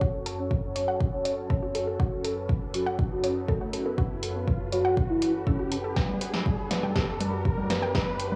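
Driving and dark, this melodic techno excerpt at 121 BPM in F# phrygian builds throughout its 8.4 seconds. An up-front overdriven electronic kick and a punchy analog drum machine of congas, hi-hat and snare, re-recorded in a small room, push beneath a round, octave-layered synth lead with chorus, tremolo, vibrato and tape echo. A lush, airy unison pad with phaser pumps with the sidechain, while a bright, detuned analog pluck playing arpeggios sits in the background, also pumping and filter-swept alongside the lead. An electronic riser enters at 1.2 seconds, and a drum fill arrives at 6.0 seconds as the harmony moves from F#m to G/F#, all set in a gritty hardware sound with recital-hall reverb.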